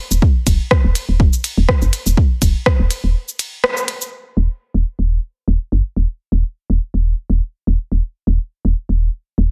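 The sound is dry and close, with little reverb, so every part sits up front in this quirky, cool slice of minimal techno, cut from a longer piece. It moves at 123 BPM in 4/4 in Eb minor, with a light 16th-note swing. An overdriven, layered electronic kick punches through until 2.8 seconds, while a tape-tinged minimal kit of clicky hats, ride cymbal, rim click and shaker, all under low-pass filtering, carries on until 4.1 seconds. Beneath them, a soft, round FM bass with a woody, dark tone and a fast, decaying attack pumps against a sidechain and holds down the low end between Eb1 and Gb1. A short break near the end of the opening drop brings a band accent at 3.6 seconds, after which the bass carries the rest of the excerpt alone.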